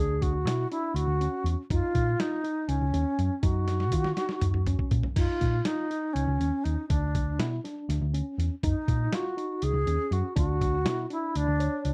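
A driving 7/8 pulse at 242 BPM in eighths propels this bright progressive instrumental band piece, where a breathy alto flute with vibrato and slapback echo carries the up-front melody over a dark, round hollow-body picked bass and mellow tine electric piano arpeggios set in the background, while a gritty, pitched-down sampler-style boom bap kit with a thumpy kick enters at 0.2 s and plays a fill from 3.7 to 5.2 s, captured in a dry, close 1970s-style studio sound.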